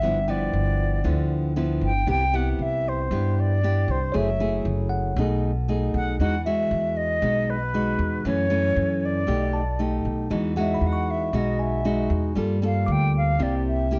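A straight 4/4 bossa nova groove at 117 BPM carries this sunny, sophisticated excerpt, where woody pizzicato upright bass and bright fingerpicked nylon-string guitar sit up front beneath an airy, tongued concert flute melody with vibrato and a slapback echo, a bell-like tine electric piano chimes in the background and drops out between 6.2 and 9.5 seconds, and the flute takes a solo from 10.3 seconds as the harmony moves from Emaj9 through Gm9 to C7, all in a dry, close 1970s-style studio sound.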